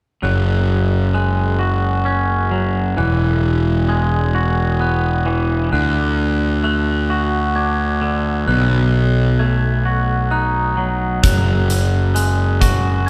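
This melancholic, cathartic post-rock excerpt in F# minor moves slowly at 44 BPM in 6/8 with a straight feel. From 0.2 s, a clean, twangy, fingered electric guitar plays compressed arpeggios between B2 and F#4, while a glockenspiel struck with rubber mallets adds mellow, bell-like arpeggios high up between F#6 and G#6, close-miked and dry. Beneath them, a fuzz-laden, overdriven picked electric bass sits up front. The harmony passes through F#sus2, Eadd9, D and B7 before returning to F#sus2 at 11.2 s, where a huge arena drum kit enters with a punchy kick and hi-hat until 12.8 s. A wet concert hall reverb with a 2.3 s decay gives the recording a church-like spaciousness.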